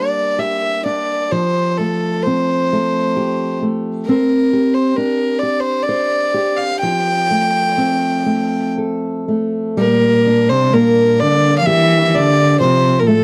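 In a free, rubato three-beat lilt, this haunting, mournful Celtic slow air, cut from a longer piece, sets a nasal, earthy fiddle with an airy bow above a dark, fingerpicked steel-string acoustic guitar whose finger squeaks are audible, until a rich, focused cello with vibrato joins as a second line at 9.8 seconds, all captured in a dry, close 1970s-style studio sound.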